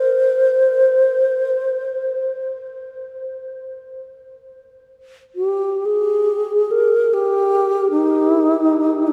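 A mellow alto flute with a wooden head carries this piece alone, playing between D4 and C5 in C minor. Its tone is airy, with a soft attack, vibrato and a slightly unsteady quality. Set up front in the mix, the flute is treated with tape echo and sits inside a huge, wet ambient reverb with a 7.1-second decay. This is world-flavoured meditation music in free time, spacious and haunting, its dreamy sound soaked in the long reverberant tail. The 9.1-second recording is cut from a longer piece.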